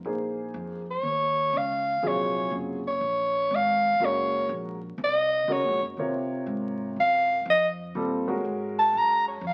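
A breathy, up-front soprano saxophone carries the solo from 0.9 s, its soft subtone lending a hypnotic, searching mood to this modal jazz excerpt in Eb dorian, swinging at 122 BPM over an Ebm9 chord. An intimate baby grand piano accompanies with long sustain and audible action noise, while a woody pizzicato upright bass on steel strings sits low beneath them. A moderate large studio reverb and the crackle of a very old 78 rpm record give the whole recording a worn, vintage sheen.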